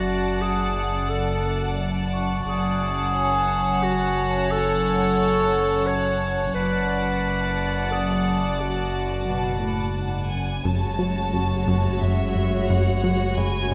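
Set in a moderate scoring-stage reverb, this eerie, ominous suspense film-score excerpt in 3/4 carries a melody on a dark, close violin section played sul tasto, over a rich, floating second violin section and an up-front classical clarinet line that stops at 10.3 s, while a bowed cello section, a background double bass section and a thick, saturated sub bass drone hold the low end beneath a mellow, ringing soft-mallet vibraphone, until at 10.6 s a woody, lush viola section and a punchy, nasal analog bass riff join in.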